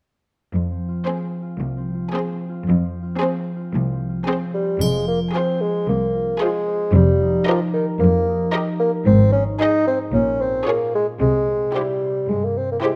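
Close, detailed microphones and light reverb frame this quirky, magical film cue in F minor, a playful, whimsical piece at 113 BPM in a straight 4/4, cut from a longer work. Ringing concert harp arpeggios and a lush, up-front cello section bass open at 0.5 seconds, soon joined by a clear, focused violin melody, a smooth second violin line and an even viola accompaniment. A dark, roomy solo bassoon enters at 4.5 seconds, and from 4.8 seconds an expressive chamber double bass section and a brief bright triangle join as the harmony moves from Fm through Eb/F, Ab5 and Bbm7 to C.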